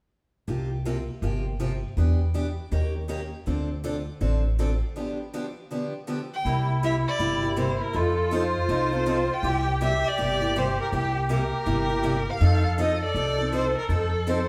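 Charming and swinging, this excerpt from a longer piece of acoustic string swing in the jazz manouche style moves at 161 BPM in 4/4 with a lilting swing on the eighths, centred in C mixolydian. A picked steel-string parlour guitar, bright and boxy with fresh strings and audible finger squeak, sits up front with the accompaniment alongside a woody pizzicato upright bass from 0.5 seconds. Their opening passage runs through chords such as C7sus4, Em7, Eb7 and Dm7 before a break on G7 at 5.0 seconds. A second section arrives around 6.5 seconds, where a rich bowed violin takes the melody with vibrato, portamento and a soft attack, joined by a reedy, shimmering musette accordion carrying a second line over C7 and F7 changes. The band plays live together in one room, wrapped in a wet stone-room reverb.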